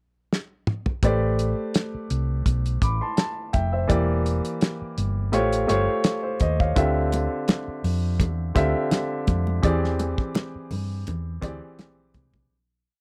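A smooth mid-tempo soul groove sits at 84 BPM in 4/4, with a gentle swing on the sixteenths, as a cloth-damped, thuddy drum kit of toms, snare, hi-hat and tight kick opens the pickup bar with a fill before the verse settles in at 1.0 seconds. This is a lush, bittersweet 1970s-style soul piece in A minor, moving through Am11, Em7b5, A7alt, Dm11 and E7alt. Up front, a polished grand piano pushes spread-voiced chords with short sustain and drops in brief fills, while a dark, round hollow-body short-scale bass plays a melodic line full of muted ghost notes, slides and chromatic approach notes. Bright, thin-skinned congas join in the background at 7.1 seconds, slapping on two and sounding open tones on four. The drums carry a rolled-off top and a small-room character in a dry, close studio sound touched with light reverb, and the whole piece fades out from 9.6 seconds.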